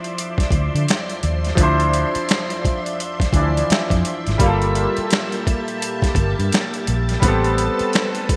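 A gritty, sampler-style boom bap kit sets a swung groove at 85 BPM in 4/4, its thumpy kick, medium-tuned snare, hi-hat and finger snaps pitched down, compressed and overdriven up front with a gated reverb. This smooth, introspective R&B and neo-soul passage in D minor, cut from a longer piece, moves from Dm9 to Gm9 at 4.4 seconds and Am9 at 7.2 seconds. A brilliant grand piano plays accompaniment close and intimate, its action noise audible and its long sustain polished by a lush chorus. Beneath it, a vintage string machine holds full, mellow sawtooth chords with a sub octave, slow attack, long release, a moving notch and ensemble chorus. A dark, round, foam-muted electric bass sits amped and up front from 0.5 to 7.8 seconds, all within a bright 1980s-style digital production with light reverb.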